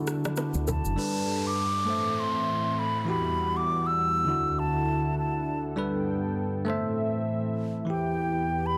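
Breezy and joyful, this afrobeats excerpt moves at 100 BPM in G major with a swung sixteenth-note feel. It opens on a short break in which a woody, ringing kalimba riff with delay sits in the background, while an overdriven electronic shaker and rim click, soft clipping on the snare, and close acoustic bongos and congas flicker briefly, along with a round, punchy fingered electric bass. A bell-like tine electric piano plays bright, clean accompaniment up front throughout, over a smooth, detuned analog pad whose lush chorus gives its sustained chords a vintage warble. From 0.7 seconds a pure, hollow concert flute carries the melody with vibrato and tongued notes, close and present in the mix. An electronic downlifter runs beneath from 1.0 to 5.8 seconds as the harmony cycles through chords such as Gadd9, Am and Emadd9, all set in light reverb within a dense, heavily limited modern master.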